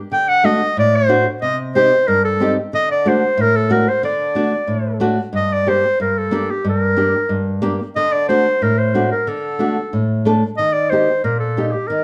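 Heard live in one room with moderate studio reverb, this soulful, bittersweet klezmer excerpt sets a clear, classical-style solo clarinet melody up front over fingerpicked nylon-string guitar accompaniment with fresh strings, both playing throughout as the music moves into a new section at 5.3 seconds.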